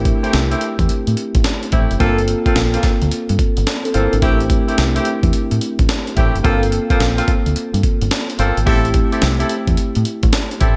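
A mellow tine electric piano with a lush chorus and a deep, dark fingered electric bass open this short cut from a longer new jack swing R&B track, joined almost at once by a gritty breakbeat drum kit and a horn section. The mood is punchy and bouncy at 108 BPM in 4/4, with a 16th-note swing feel that gives the groove its lilt. The sampler-style drums sit up front, compressed and pitched up, with a thumpy kick, a medium-tuned snare and hi-hat, all soaked in gated reverb and carrying a tape-like, small-room character. Underneath, the bass is round and foam-muted, while the clean electric piano provides accompaniment through the alternating Am7 and Gm11 chords. Jazz-style horn stabs with light vibrato and a smooth top carry a touch of delay, set within a bright, digital 1980s-style production with light ambience.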